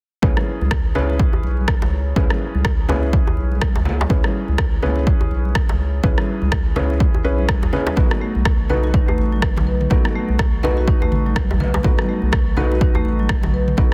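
Hypnotic and earthy, this afro house excerpt rides a swung groove built on an overdriven, punchy electronic kick up front, a produced afro-pop kit with rim clicks, toms and soft-clipped snare, plus ringing congas set back in a large room and a tight, cracking djembe played with soft hands. A round, deep analog bass with a nasal filter pluck pumps beneath felt-muted upright piano stabs whose intimate tone carries audible action noise and tape echo, moving from C#m7 to B7 at 8.0 seconds. At that point a woody marimba with soft mallets joins with mellow arpeggios, also pumping and echoed, all within a dense, heavily limited modern master.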